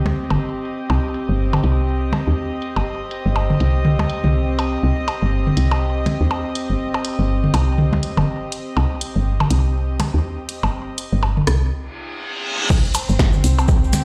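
Swung sixteenths drive this clinical, hypnotic stretch of minimal techno in 4/4, cut from a longer piece. A woody FM bass sits up front, round and dark with a fast attack and a decaying tail, pumping under the sidechain alongside a nasal, reedy chamber string section bowed in a period style with a smooth top. Overdriven rim clicks, toms and percussion blips from a minimal click kit trail tape echo, while a punchy analog drum machine adds muffled hi-hat, snare and crash, filtered and re-recorded in a large room. A downlifter opens the passage, and after a stop a reverse cymbal rises from 11.9 seconds into the drop at 12.7 seconds. There an overdriven electronic kick lands punchy and up front and a grainy, vintage tube shaker joins, all set in a bare stone room with light reverb.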